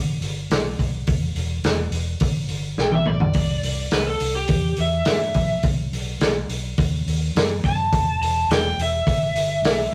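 A dark, foam-muted fingered bass opens this heavy, smoky blues rock and southern rock power-trio excerpt in E minor at 105 BPM, with a muffled, lo-fi vintage drum kit of tight kick, medium-tuned snare, hi-hat and toms joining at 0.2 seconds. A drum fill at 2.8 seconds brings in a bright, overdriven slide guitar played with fingerpicks, which sits up front for a solo over a progression of Em, C, B and back to Em. The rough rehearsal-room sound carries moderate studio reverb, and the drums have a rolled-off top.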